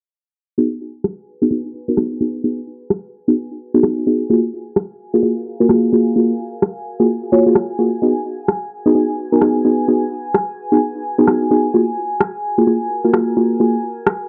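UK garage in a two-step vein, moody and soulful, cut from a longer piece with a dark, filtered production and light reverb. A deep, full-bodied chord stab with a nasal edge sits up front, coloured by chorus, cassette tape and digital delay, with a filter sweep on it from 0.6 seconds. A smooth, warm analog pad with chorus holds sustained chords beneath, and a very quiet, warbling tape-like pad adds nostalgic lo-fi texture from 1.3 seconds. A layered electronic rim click sits up front in the swung groove while the harmony alternates between G#m7 and F#maj9.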